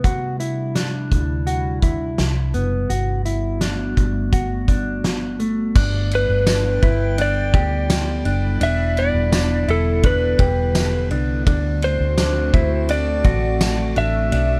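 An electric slide guitar carries the melody in this dreamy, blissful dream pop excerpt, entering at 6.2 seconds with a slightly broken-up, compressed tone trailed by delay. Beneath it, a warbly, tape-like pad holds detuned, nostalgic chords with a slow attack and long release, thickened by chorus and its own reverb. A mellow, clean electric guitar plays fingered arpeggios through subtle chorus and delay, while a vintage foam-muted fingered bass sits up front with a round, amped tone. A loose indie drum kit in a roomy studio space keeps a straight 4/4 feel, with dark cymbals, a fat snare and a punchy kick alongside hi-hat, ride, crash and tambourine. The harmony drifts from D9sus4 and Gmaj9 through G6 and Em7 to D7, all bathed in a light reverb.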